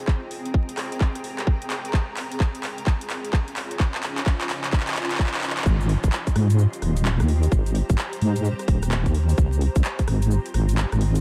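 UK garage in a swung two-step at 129 BPM, this sunny, soulful excerpt in Ab major moves between lush Abmaj9 and Dbmaj9 chords. A blurred, evolving granular cloud pad sits quietly in the background with chorus, reverb and sidechain pumping, while a tight, up-front electronic kick and a layered garage kit of handclaps, metallic hi-hats, rim clicks and shaker carry a drum-fill build-up. The drop arrives at 5.7 s with a deep, dark wobble bass, chorused and pumping, all set in light reverb, digital ambience and vinyl crackle.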